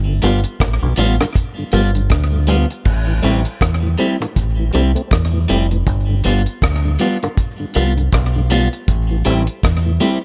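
A round, amped fingered electric bass sits up front and anchors this serious, hypnotic roots reggae excerpt, playing low in the F1 to E2 range at 80 BPM in 4/4 with a 60% swing on the sixteenths. Beside it, a clean, picked electric guitar with a scooped tone and tape echo rings up front, while a dry, tight reggae drum kit with a rolled-off top works through kick, rim click, hi-hat and crash cymbal, touched by slapback echo. Further back, a mellow tonewheel organ adds a dark, lightly overdriven bed, colored by chorus vibrato, a slow rotary speaker and slapback echo. High-tuned bongos played with soft hands sit close and dry in the background. Set in A minor, the harmony sways between G7 and Am7, moving to Am7 at 2.9 seconds and settling on Am7 again at 8.9 seconds within a studio ambience.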